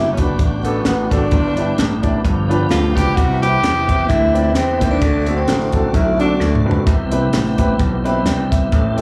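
A breathy tenor saxophone carries the melody up front, close-miked and mellow with a soft attack, scooped notes and a light vibrato in a jazz style, before falling away at 6.6 seconds. This uplifting, reverent slice of uptempo gospel, cut from a longer piece, has a gentle swing in 4/4. Underneath, a clear grand piano gives intimate, natural accompaniment with audible action noise, while a full tonewheel organ holds sustained chords through a slow rotary speaker, lightly overdriven and coloured by chorus vibrato. A gritty slap bass sits up front, electric, growly and punchy, with a bright, amped bite. A tight funk drum kit, dry and acoustic with a high-tuned snare and a tight kick, comes in at 0.2 seconds and plays a fill at 6.4 seconds, and the whole performance is heard as a live gig through the venue's PA, with club reverb and small room ambience.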